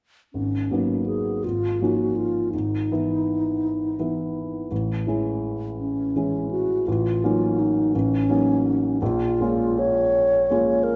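Classical impressionist duo for alto flute and grand piano, wistful and mysterious, moving in a slow, rubato 6/8 at 55 BPM. Both parts play from 0.3 to 11.0 s: the up-front alto flute carries the melody with an airy, hollow tone, tongued notes and vibrato, over an intimate grand piano whose action noise is audible, drifting through G#m11, Emaj7/G#, Amaj7 and A#m7. The sound is dark and warm, set in a moderate scoring-stage reverb, and the passage is cut from a longer piece.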